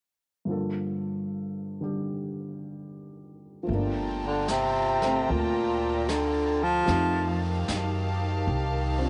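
A clear baritone saxophone carries the melody in this wistful, intimate jazz ballad excerpt, entering at 4.3 seconds up front with vibrato, a soft attack and scooped notes, and playing until 7.4 seconds. A dark, mellow baby grand piano opens alone at 0.5 seconds, its short sustain and audible action noise giving the swung accompaniment a close, natural feel. At 3.7 seconds the band fills in: a woody, thumpy upright bass sits up front, a chamber string section adds bowed sustained chords played sul tasto with light vibrato, and a distant, roomy brush kit on snare and hi-hat softens the beat with a rolled-off top. The harmony moves from Gm7 to Gm9 and then settles on F9, all set in a small room ambience with a muted high end.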